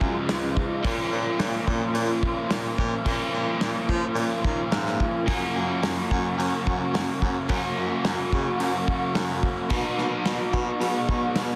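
Shoegaze and dream pop rock with a dreamy, hazy mood: two overdriven electric guitars play the riff, one with lush chorus and the other darker and soaked in reverse reverb, while a slightly broken-up, lo-fi guitar through a small old amp arpeggiates in the background with ensemble chorus and tape echo. A clear, punchy baritone saxophone with light vibrato carries the bass line, and a loose indie drum kit, dark and up front with a tight kick, plays hi-hat, kick and snare. The room is dry and the master dense and heavily limited, with the harmony moving from Dbadd9 through Bbm and Gb to Cb6 over this 11.6-second cut from a longer piece.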